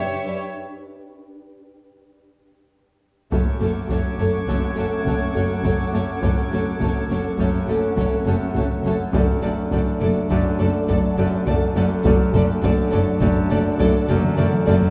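Moving in a straight 5/4 at 103 BPM, this tense, uneasy suspense film cue in F# minor, cut from a longer piece, opens on soft-attack sul tasto violins carrying a floating melody over a second violin line, very quiet violas, a cello pedal on F#2 and a flickering, grainy, detuned granular texture holding sustained chords. At 3.3 seconds a mellow, distant French horn section, a ringing fingerpicked Celtic harp riff, a rich double bass section on F#1, band-limited vintage taiko struck with hard sticks and a high, pure violin texture join in, and that texture drops out at 8.8 seconds. The ensemble sits back in a wet stone room, and a taiko fill closes the passage at 14.2 seconds.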